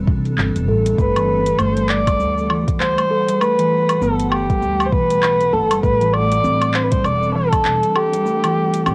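An up-front, nasal kamancheh carries the melody from 1.0 s, its bowed line full of vibrato and portamento and trailed by analog delay, over an earthy, warm organic downtempo groove at 99 BPM with swung sixteenths. Beneath it, a bright steel tongue drum rings out arpeggios, a woody, thumpy pizzicato upright bass pumps under sidechain compression, and a blurred granular cloud pad sits in the background with its own reverb and tape colour, moving through Am11, Gmaj9 and Am7. A soft, overdriven electronic kick and a layered deep house kit of cabasa, handclaps, metallic hi-hat and woodblock share a small-room, cassette-worn sound in this short home-recorded excerpt.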